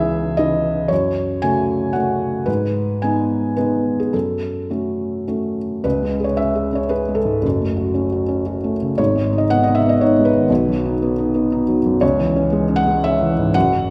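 Neoclassical minimalist piano in 3/4, wistful and intimate, moving with a rubato feel between 104 and 120 BPM in F# dorian, tuned to A4 = 441 Hz. A felt-muted upright piano plays alone throughout this 13.9-second excerpt, sitting up front with a soft, mellow tone from its thick felt and audible action noise, spanning F#1 to G#5. The harmony drifts through C#m, F#m, G#m and B before settling back on C#m at 12.0 seconds, all held in a wet recital hall reverb that lingers for about 1.4 seconds.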